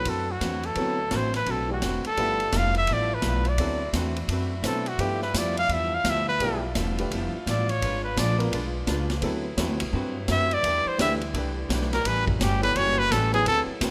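A swing feel in four drives this brassy big band fragment, cut from a longer piece, with the acoustic drum kit riding its cymbal and hi-hat over a punchy kick and medium-tuned snare in a big, natural-sounding room. Beneath it, the upright bass plays woody, thumpy pizzicato lines on gut strings, sitting solidly in the mix. A clear, close-miked trumpet stands up front and solos throughout with jazz vibrato, carrying the melody over changes that move between D13 and G13, pass through a G#dim7, and close on Em7 and A13. Supporting it, a clean, picked hollow-body electric archtop guitar comps alongside a dark, mellow baby grand piano in the background, while a warm saxophone section holds sustained ensemble chords with light vibrato. A light reverb gives the whole band a touch of space, and the mood stays swinging and brassy from start to finish.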